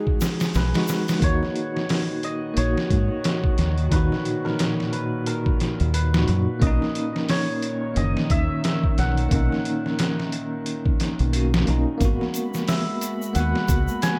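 Trip hop in Eb phrygian at 89 BPM, this melancholic, cinematic excerpt from a longer piece moves with a swung sixteenth-note feel in 4/4. A sampler-style drum kit sits up front, pitched down and gritty, with a thumpy kick, a medium-tuned snare and hi-hat, while a deep, round, punchy dub bass joins at 0.6 s. A bell-like tine electric piano, clean and bright through its built-in speakers, carries the accompaniment with tremolo and tape echo, and a mellow, shimmering hammered dulcimer plays the melody through 12-bit sampler grit and its own tape echo. Behind them, a dark chamber string section holds bowed chords with a nasal, reedy gut-string tone and a smooth top. A soft, saturated tube shaker sits in the background, returning at 12.0 s as the harmony settles on Abm7 after opening on Emaj7 and turning to Ebm at 1.2 s. The echo-heavy studio reverb and a faint mains hum give the mix a hazy, nocturnal air.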